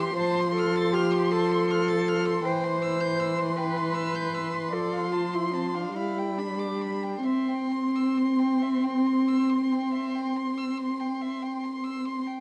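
A slow, serene romantic movement for string quartet opens with all four players together, each bowing sul tasto with a close, intimate presence. The dark, woody viola sits up front in the accompaniment, while the cello carries the bass with light vibrato and a soft attack. Two violins float above with an airy bow: the first holds a high melody and the second traces a line whose range reaches from beneath it to well above it. The music moves in a rubato 12/8 at roughly 44-54 dotted-quarter beats per minute in C major, passing from F through C/E, Dm7/F and G before settling on C. Moderate studio reverb gives the dark, warm production a gentle glow; the cello drops out at 11.2 s, and the second violin sounds last, until 12.4 s, in this fragment of a longer piece.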